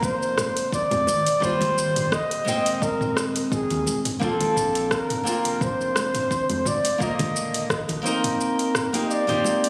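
Relaxed and blissful, this sunset chillout excerpt drifts along on a gentle sixteenth-note swing in 4/4. A trumpet with a bucket mute carries the melody up front, its dark, veiled tone touched with light vibrato and a smooth top in a jazz-style solo, with digital delay trailing its phrases. Close beside it, a fingerpicked nylon-string guitar supplies warm classical accompaniment, while a round analog bass sits deep and nasal in the background until it stops at 8.4 seconds. The deep house kit adds metallic hi-hats, rim clicks, shaker and toms over a layered, tape-tinged electronic kick that drops out at 7.9 seconds, and hard-handed congas sit further back with a live-room feel. The chords move from Bb through Abmaj9, Bbmaj7 and Ebsus2 to Cm9/Bb, set in a moderate plate reverb with the compressed character of a phone recording made in the room.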